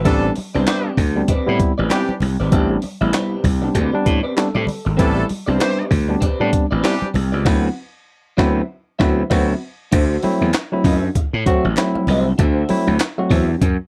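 A dry, close 1970s-style studio sound with little reverb frames this sly, hypnotic funk cut, taken from a longer piece, moving at 97 BPM in 4/4 with a 16th-note swing. Up front, a gritty, overdriven slap bass growls low and punchy, while a compressed, pitched-up breakbeat sampler-style kit delivers a thumpy kick, high-tuned snare, hi-hat, crash and handclaps, re-recorded in a large room. A barky, slightly out-of-tune tine electric piano plays stabs through a combo amp and adds a fill at 4.1 seconds, and an electric guitar at the edge of break-up, picked and compressed, carries the accompaniment through a phaser. A clear, tight horn section in octave doubling plays a second line until 7.1 seconds, and very quiet, damped congas tick along close and dry. The harmony sits on Am11 before a band accent on D13 at 7.5 seconds, then settles on D9, where a crisp, very quiet group handclap from a live room joins at 10.5 seconds.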